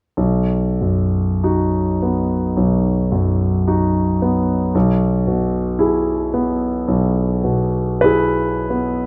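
A clear concert grand piano plays alone from 0.2 s to 9.1 s in this short fragment of a tender, nostalgic romantic nocturne, moving freely in rubato within a slow 4/4. The polished, up-front piano has a deep bass and short sustain, and its harmony shifts from B to E over a B in the bass at 4.7 s. A moderate, large studio reverb surrounds the playing.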